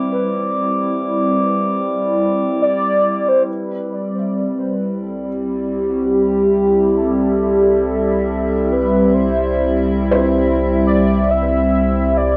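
Recorded at home on cassette in a small, wet booth, this peaceful ambient excerpt in C major drifts at 69 BPM over a Cmaj7 chord. Up front, a warbling, nostalgic pad holds sustained chords through chorus, phaser and its own reverb. In the background, a soft, felt-muted upright piano with audible action noise plays arpeggios through analog delay, while a glassy, ethereal glass harmonica adds texture through plate reverb. A velvety synth lead with vibrato and a filter sweep carries the melody from 2.6 seconds, and a round, deep analog bass joins at 3.5 seconds as the piano, bass and lead fade in.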